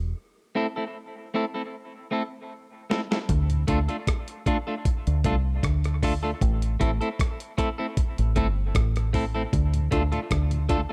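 Deep, round fingered electric bass opens this hypnotic, meditative dub reggae excerpt in D minor at 77 BPM, its dark, foam-muted tone sitting up front in a straight 4/4. At 0.6 seconds a clean, picked electric guitar joins with a scooped, low-pass-filtered sound drenched in dub echo, playing between A3 and A4 over an opening break that moves through Am. A drum fill leads in the dusty, sampler-style kit, gritty and compressed with a thumpy kick, medium-tuned snare, rim click and hi-hat, and from 3.3 seconds the groove settles into a Dm and Am alternation. A soft, flute-like tonewheel organ offers a brief touch at 3.5 seconds and returns near the end, very quiet, with key click, chorus vibrato and a slow rotary shimmer. The mix is dry of reverb but heavy with echo, keeping bass, guitar and drums close and present.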